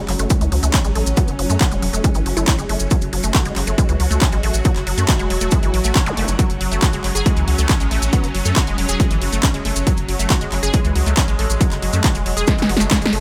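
An overdriven electronic kick drum sits up front, heavy and layered, driving this hypnotic psychedelic trance excerpt at 138 BPM in F# minor. A techno kit with a punchy snare, handclaps and hi-hat adds its own overdriven edge, and a drum fill closes the passage at 12.5 seconds, while grainy, close and dry maracas stay in the background. A deep, round analog bass anchors the low end beneath a lush, detuned sawtooth pluck riff that pumps with the sidechain and trails off into dub echo. Behind them, a swarming, tense drone of sustained chords evolves slowly, wave-folded and granular, bathed in its own reverb and also pumping. A nasal, wobbling vowel-sweep bass surfaces faintly in the background with chorus, tape saturation and dub echo, and a brief electronic zap flashes past at 6.1 seconds, all held together by a digital ambience.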